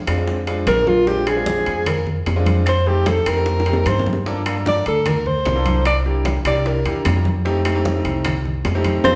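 Sophisticated and lively, this 150 BPM Afro-Cuban jazz excerpt in F mixolydian features an up-front alto saxophone with vibrato and a warm subtone, entering at 0.7 seconds for a jazz solo over dark, thumpy pizzicato gut-string upright bass, clear and open baby grand piano chords moving through Bb7, F7, Gm7 and C7, ringing metal-shell timbales, background congas and round low-tuned bongos struck with hard hands, and woody claves, with a drum fill at 3.5 seconds, all captured as a band playing together in a large, reverberant studio.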